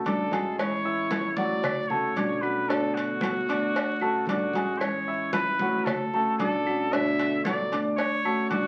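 A clear, punchy trumpet with vintage vibrato carries the melody up front over a danceable Cuban son and guajira groove at 113 BPM, moving through Dmaj7, Amaj7 and Bm7 in this short cut from a longer piece. A warm baby grand piano spins long-sustained arpeggios, while a dark fingerpicked steel-string acoustic guitar with audible finger squeak, a thumpy pizzicato upright bass in the background, ringing congas, a tight high-tuned cowbell and woody claves entering at 0.6 seconds fill out the band. The whole mix sits in wet studio reverb with the crackle of a very old 78 rpm record.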